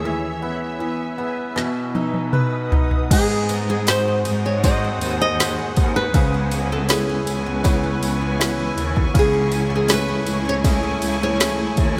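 Emotional and melancholic, this excerpt of an 80 BPM pop ballad sets a fingerpicked flamenco guitar melody with digital delay over clear baby grand piano, a cloudy, detuned granular pad, background steel-string guitar arpeggios with analog chorus and a lush bowed cello section on the bass line, while an overdriven R&B drum kit with a woody snare enters with a fill at 1.6 seconds and a jingly tambourine joins at 3.1 seconds, under a plate reverb and bright 1980s-style digital production.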